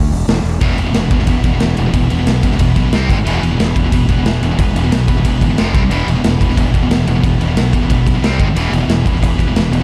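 Epic and aggressive, this heavy metal excerpt drives ahead at 181 BPM in a straight 4/4, centred on E major and cut from a longer piece. A growly, fuzz-laden fingered bass opens alone, sitting up front with an overdriven bite, and the big acoustic rock kit joins almost at once with a punchy kick, medium-tuned snare, hi-hat, ride and bright cymbals ringing in a large room. At 0.6 seconds three guitars arrive together in the background: two overdriven, picked electric guitars, one of them double-tracked and pitched higher, plus a scooped high-gain guitar with a distorted edge. The riff circles around E, broken by quick jabs through C5 and G#5 chords and once through F5, before landing back on E each time. Light reverb and a dark, warm production frame the whole.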